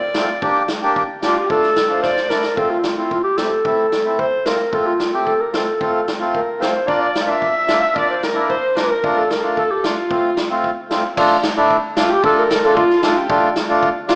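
A dark, smooth-topped clarinet sings a festive, soulful klezmer melody in classical style from the first moment, shadowed by a woody, close bowed violin with vibrato in the background that drops out at 2.4 seconds and returns at 6.9, while an up-front reedy accordion accompanies and a distant, roomy acoustic drum kit with a boomy kick plays a fill at 2.0 seconds, the whole heard in a reverberant recital hall with a small-speaker sound.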